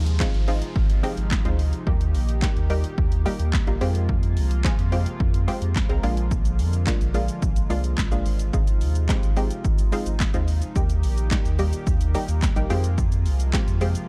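A straight 4/4 groove from an up-front house drum kit, with punchy kick and snare, handclaps, hi-hat and shaker, drives this summery, carefree dance-pop piece, where a deep, round sine sub bass and bright, detuned sawtooth chord stabs pump with the sidechain alongside a shimmering, retro pulse-width pad, while an electronic downlifter sits in the background until 4.1 s, all in a dark, dry production.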